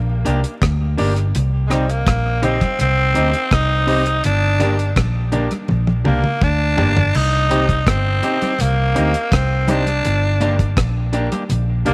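A breathy, raspy tenor saxophone carries the melody up front with vibrato and tape echo in this laid-back, hypnotic roots reggae excerpt at 83 BPM in C minor, over a round, punchy muted electric bass, a dark, slightly broken-up electric guitar in the background with its own tape echo, woody upright piano stabs, a deep drum kit with a tight kick, rim clicks and tape echo that plays a fill from 5.7 to 7.1 seconds, and very quiet, close congas entering at 1.4 seconds, set in light studio reverb with vinyl crackle.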